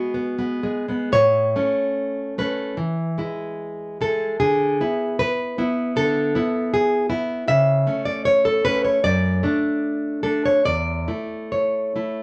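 A solo nylon-string guitar opens this short passage from a longer romantic classical piece, fingerpicked up front with a tender, warm voice and an audible finger squeak, moving around 76 BPM in 4/4 with a loose, rubato pulse. In A major, the harmony settles on A by 1.1 seconds, then drifts through E and E7/D before easing to A/C#, D/F# and finally A/E near 10.6 seconds. A moderate studio reverb gives the guitar a modest sense of space.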